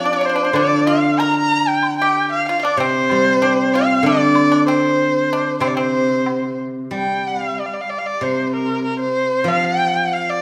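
Festive and pastoral, this short excerpt from a longer Chinese traditional chamber piece moves at 94 BPM in 2/4 with a free, rubato feel in the C shang mode. A single bowed erhu carries the melody up front with vibrato, portamento and expressive phrasing, over a ringing, silvery steel-string zither played with fingerpicks, while a bright, dry, percussive pipa adds a second line and a close woodblock with dark cymbals sits in the background until both drop away around 6.4 and 6.6 seconds. Erhu and zither continue alone into a new section from 6.9 seconds, all set in a moderate recital-hall reverb.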